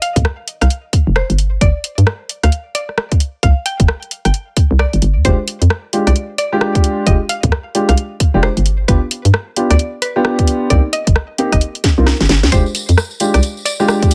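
A light reverb sits over this moody, late-night excerpt of two-step UK garage at 132 BPM in F dorian, swung on the sixteenths, where a hollow, bouncy FM bass and a tight electronic kick sit up front beneath the cracking snare, rim clicks and bright hats of a layered garage kit. A woody, round synth pluck carries the melody with chorus and tape echo, and from 5.2 seconds a dark, boxy grand piano adds stabs through digital delay over chords moving from Fsus2 through Fm69, G7 and Cm7. A drum fill arrives at 11.8 seconds, the kick briefly drops out, and a jingly tambourine enters at 12.5 seconds.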